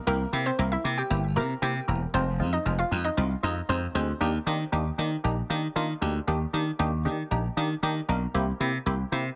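Dance-pop at 116 BPM in Eb major with a carefree, euphoric mood, where a bright, punchy slap bass sits up front under crisp, detuned wavetable chord stabs over C7, Fm7 and Ebmaj7, while a hollow, nasal square pluck carries the melody with chorus and digital delay until it stops at 4.1 seconds, all in a dry room cut from a longer piece.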